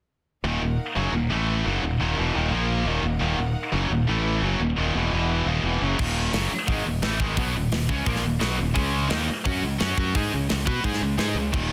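Heavy metal in a relentless, heavy mood, cut from a longer piece. Two picked, distorted electric guitars drive a riff from 0.4 seconds alongside a growly, fingered electric bass that sits up front, all three running to 11.7 seconds. For the opening stretch, a symphonic string section holds sustained, biting chords with light vibrato in the background until 6.0 seconds. At that point a tight acoustic metal drum kit enters with crash cymbal, hi-hat, kick and snare, its sound gritty and saturated in a big room, with bright cymbals and a tight kick. The harmony keeps returning to an E-flat minor chord between brief power-chord moves, and the whole is set in a small room with a dense, heavily limited modern master.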